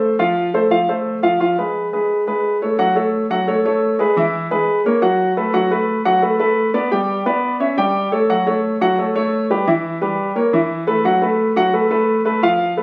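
In a straight 4/4 feel, this driving, fiery jazz fragment, cut from a longer piece, features a solo grand piano that plays throughout and sits up front with a warm, natural tone. After a brief opening, the harmony moves at 2.8 seconds into a longer passage that winds through F#m, E, B7, G, A7 and Em before landing on a bare B5. The sound carries moderate reverb and the ambience of a club room, captured on a phone.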